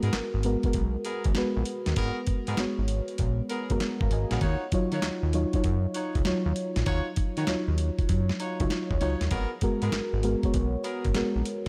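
New jack swing R&B at 98 BPM with a swung sixteenth-note feel, confident and punchy, where a gritty, overdriven sampler-style kit of thumpy kick, medium-tuned snare, hi-hat and handclaps sits up front beside a fat, detuned sawtooth analog bass with a plucky filter, while a soft, round FM electric piano with chorus lays dark Abm9 and Ebm9 chords and a loose jazz-style horn section with light vibrato and tape echo punches stabs until 11.1 seconds, all in a digital ambience.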